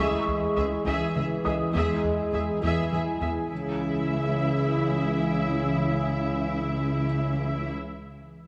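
Cinematic music in C# minor at 68 BPM in 6/8, relentless and futuristic, where a lush, distant viola section and a close, focused cello section hold the bed alongside dark French horn chords and a warbling, lo-fi pad with chorus, phaser and built-in reverb, while a rubbery, nasal square bass riff and a soft felt-muted upright piano with tape echo play only until about 3.5 seconds, all moving from C#m to E and back within a short cut from a longer piece set in a wet concert hall.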